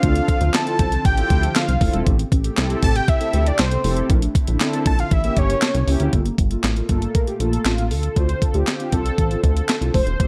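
A fat, detuned analog lead with phaser and slapback echo carries the melody from the start, over a thumpy, tape-toned 12-bit drum machine with handclaps, a glossy chorused pulse-wave synth bass, round, sustained brassy synth accompaniment and a clean, fingered electric guitar riff in the background, while a lush, thick unison pad enters at 0.3 seconds. This slick, late-night early-eighties boogie funk in D minor moves at 118 BPM through Dm7, Am7, Bbmaj9#11 and A7b9 before the lead drops out at 5.9 seconds and an analog polysynth solo takes over at 6.1 seconds over Gm9 and Dm7. The dark production sits in light reverb, and this cut is taken from a longer piece.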